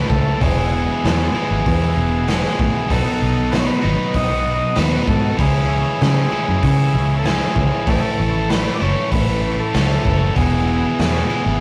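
A rough rehearsal-room recording with warm saturation and moderate booth ambience frames this trippy, hazy psychedelic rock excerpt, where a buzzy vintage combo organ carries the melody over a very quiet tonewheel organ holding chords through a slow rotary speaker with key click, as a bright, double-tracked overdriven guitar riff sits up front beside a round fingered bass, a raw garage drum kit with a punchy kick and rolled-off top, and barely audible high-tuned, thin-skinned congas, all moving through Eadd9, B, C#m and Aadd9.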